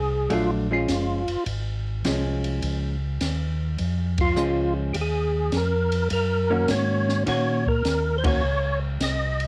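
A percussive tonewheel organ carries the smoky, late-night melody from the start, its fat tone marked by key click and third-harmonic percussion through a slow rotary speaker, chorus vibrato and cassette tape, while a second, round and dark organ holds the bass line up front with the same slow rotary and vibrato. From 0.3 seconds a picked, compressed hollow-body jazz guitar adds clean, shadowy accompaniment, and an open acoustic drum kit, with a high-tuned snare, boomy kick, hi-hat and ride colored by cassette tape, sets a swung 4/4 soul jazz organ trio groove over Bbm7 moving to Ebm7. The band hits accents at 4.1 and 8.1 seconds in this short cut from a longer piece, a lightly reverberant home cassette recording.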